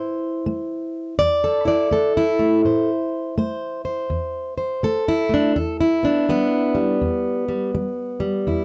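A swung eighth-note feel at 82 BPM in 4/4 sets a slow, unhurried pace for this short stretch of acoustic country blues, which is cut from a longer piece. A single fingerpicked steel-string acoustic guitar, plugged in, plays alone throughout its 8.6 seconds, ranging from E2 up to D5. Its jumbo body gives a full-bodied tone, and it sits up front in the mix. The harmony rests on A minor before shifting to E minor at 5.6 seconds, lending the passage a mournful, smoky mood. The sound is dry and close, with little reverb, in the manner of a 1970s studio recording.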